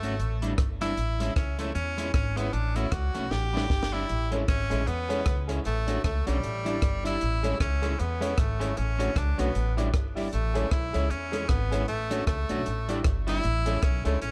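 An edgy tenor saxophone with light vibrato and tape echo carries the pop-style solo melody through this bouncy, upbeat, swung ska fragment, backed by a twangy, slightly broken-up picked electric guitar with spring reverb and tape echo, a woody, dark pizzicato upright bass up front, and a dry compact cocktail kit with a high-tuned snare and punchy kick that plays a fill at 3.3 seconds, before a warm upright piano adds echoed background stabs from 4.3 seconds, the whole set in a light reverb.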